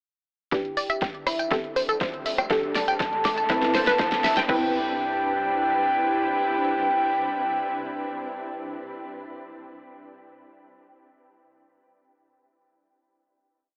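A soft, octave-layered synth lead with a round, dark tone carries a repeating riff melody through this short, expansive and uplifting progressive house piece at 121 BPM in C major, colored by chorus, phaser, vibrato, tape echo and sidechain pumping. Beneath it, an analog pluck runs a 16-step arpeggiated sequence and a detuned unison pluck punches out held chords with syncopated pushes, while a shimmering, ethereal pad with an octave-up sparkle fades in to sustain the harmony over Em7, Am7, Gsus2 and Cmaj7. A punchy, overdriven four-on-the-floor kick and a deep house kit of hats, tambourine, rim, fat snare and crash drive a build with a drum fill, as filter sweeps move across the lead and both plucks. A very quiet riser joins at 1.9 seconds, and a thick, very quiet sub bass plays a dotted rhythm underneath. At 4.5 seconds the build gives way to a final chord, carried by the lead, pad and stabs and bathed in huge ambient reverb with a telephone-like sound.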